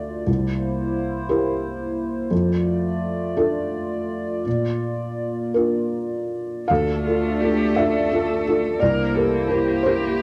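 A rubato 6/8 sway at roughly 51-60 BPM in dotted quarters carries this melancholic, fragile neoclassical piano-and-strings fragment in D minor, cut from a longer piece. A felt-muted upright piano sits up front with a dark, intimate, short-sustained tone, over a hollow, flute-like pad with slow attack, long release and chorus. At 6.7 seconds a bowed viola with expressive vibrato and portamento enters, distant and rich, alongside a focused, clear cello, all carrying cassette tape colouring in a small room with moderate spring reverb that gives it a homespun feel.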